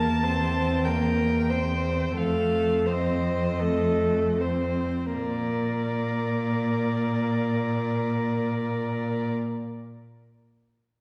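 Warm and lyrical, this slow romantic movement for string quartet in Bb major moves at a rubato 37-49 BPM and slows through its first 5.1 seconds, with a rich, smooth first violin carrying the melody above an expressive second violin line marked by portamento and soft attacks, a focused viola accompaniment and an even cello bass with vibrato, all heard from further back in a reverberant recital hall in a passage cut from a longer piece.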